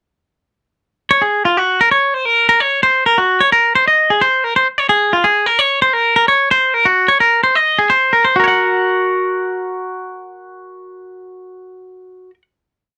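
A dry, close 1970s-style studio sound frames this short, playful rock piece, where a single twangy electric guitar, clean, picked and compressed, plays a bright ostinato up front from 1.1 seconds before settling onto a final chord at 8.3 seconds.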